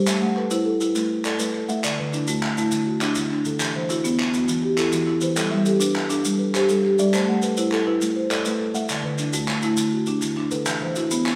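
A rolling 12/8 pulse with a straight feel drives this short cut from a longer piece of southern African traditional music, built as an mbira-style interlocking cycle. Kalimba and marimba both spin arpeggios across the same register from the very start. The marimba sits up front with a warm, mid-forward tone from its medium mallets, while the softer, darker kalimba offers woody, hollow fingertip plucks that are short and smooth. Crisp, human group handclaps enter at 0.1 seconds, set back in a large room, alongside grainy, close and dry maracas that fall away at 11.2 seconds. The harmony circles through Am, D, Em and G, and the repeating loop gives a trance-like, hypnotic mood. The band plays live together in one space, wrapped in a wet studio reverb.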